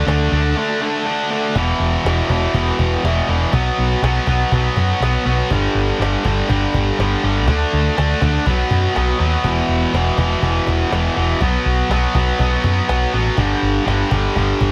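Hard rock in E minor at 122 BPM with a straight 4/4 feel, this short cut from a longer piece sounds aggressive and heavy. A tight, bright distorted electric guitar sits up front, picked and double-tracked, driving a riff from E2 to D4 over chords that move among D5, E5, B5 and G5. Beneath it, a hollow-body short-scale electric bass played with the fingers gives a dark, round and punchy amped tone, ranging from E1 to F#2. A woody acoustic cajon with faint snares enters at 0.1 seconds and stays close but in the background. A break from 0.6 to 1.6 seconds closes the brief opening before the main section starts on E5 and runs to the end at 14.7 seconds. The sound is dry, with little reverb and a faint mains hum.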